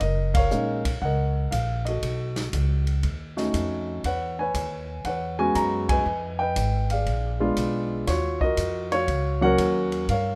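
A swung 4/4 groove with a lilting eighth-note feel drives this moody jazz piano trio fragment, cut from a longer piece. The upright bass, played pizzicato with a woody tone, sits up front and holds down the low end. The vintage drum kit moves between hi-hat, ride cymbal, snare and a punchy kick, sounding natural and acoustic in a studio room and sitting lower in the mix. Over them, a mellow, dark grand piano carries the melody up front, moving through chords such as Gb6, B9 and E69 before turning toward Fm7b5, Bb7b9 and a closing Ebm9. The whole band hits accents together at 0.3 and 5.8 seconds, and a light reverb gives the trio a gentle sense of space.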